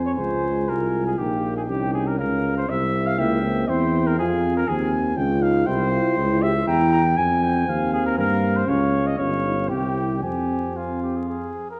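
Vinyl crackle and a wet recital-hall reverb surround this grave, solemn brass quintet passage, cut from a longer classical piece and moving with a rubato feel in triple metre. A mellow trumpet with light vibrato carries the melody while a clear, vintage-toned flugelhorn sits up front with a second line, and French horn and euphonium supply accompaniment in the background above a tuba bass that is up front, with light vibrato and a smooth top. All five begin together, the lower three stop at 11.5 seconds, and the trumpet holds on until 11.8 seconds as the harmony settles back on its home chord.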